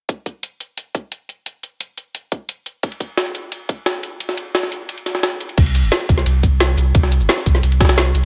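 A straight 4/4 groove of woody snare, metallic hats, shaker and crash from a layered drum and bass kit and a tight, up-front electronic kick drives this uplifting, dreamy liquid drum and bass cut, with a gritty, pitched-up jungle sampler-style kit of high-tuned snare, hats and ride joining at 2.8 s, the kick dropping out at 4.2 s, and a deep, full sine-and-triangle sub bass with an octave layer and tube saturation landing on the drop at 5.6 s, all in a dry, close mix.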